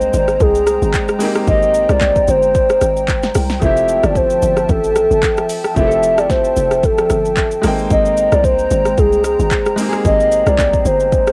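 This relaxed amapiano excerpt opens with every part sounding at once: a woody, clarinet-like synth lead carries the melody up front, colored by chorus, vibrato and tape echo. Beneath it, a clear concert grand piano with a slightly boxy, short-sustaining tone plays the accompaniment, while a soft, airy pad with a flute-like quality holds sustained chords treated with chorus. A bouncy, percussive log drum bass with a fast attack and quick decay anchors the low end, hollow in tone. The deep house drum kit, overdriven and given a cassette-tape grit, layers a deep kick, punchy snare, handclaps, rim clicks, shaker and metallic hi-hats over a lightly swung sixteenth-note feel. The harmony moves from Abmaj9 to Fmaj9 at 3.6 seconds and back at 7.6 seconds, all within a light reverb and the character of a home cassette recording.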